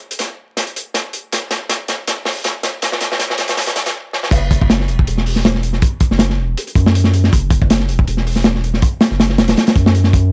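This dry, gritty recording has little reverb and carries a layer of vinyl crackle, a dark and atmospheric cut from a longer drum and bass and jungle piece with a lightly swung feel. A crunchy acoustic breakbeat kit, up front in a small room, opens the track with a building fill of punchy kick, medium-tuned snare, hi-hat and shadowy crash cymbal, its top end rolled off. The drums have a smooth, warm weight to them. The kit breaks off at 3.9 seconds for a brief stop before the drop. At 4.3 seconds a deep, thick sine sub bass arrives with a fast attack and a sustained, saturated tone, running beneath the breakbeat to the close.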